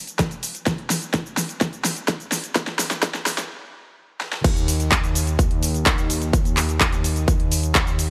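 A straight 4/4 pulse at 127 BPM drives this emotional, anthemic festival progressive house cut, as a punchy, overdriven electronic kick and a layered big-room kit of crash, handclaps, hi-hat, shaker and a huge snare fill out a build-up that breaks into a stop at 3.5 seconds. At the drop at 4.4 seconds, a fat, detuned sawtooth analog bass enters around Eb2 with a saturated filter pluck, fast attack and sustained, evolving tone, pumping against the sidechain. The drums and bass sit up front, the drums carrying studio ambience, all within a high-pass-filtered digital space in this section taken from a longer piece.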